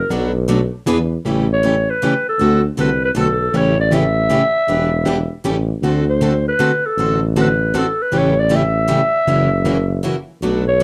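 Playful and lively, this short cut from a longer acoustic string swing piece moves in a bouncing triple metre with a swung lilt. A growling clarinet carries the melody up front, its raspy, gritty tone colored by scooped notes, a light vibrato and a plate reverb that give it a vintage, mellow edge; it opens with a brief solo from 0.0 to 1.2 seconds. Two picked steel-string acoustic guitars provide the accompaniment: one plugged-in, boxy and concert-sized, with audible finger squeak, and the other a brighter, parlour-style instrument sitting lower in the mix. Underneath, a tuba with a smooth top lays down the bass line, also placed up front. The harmony circles through dominant seventh chords such as A7, D7 and F#7. The whole performance sits in a moderate club-sized room with a dark, warm production.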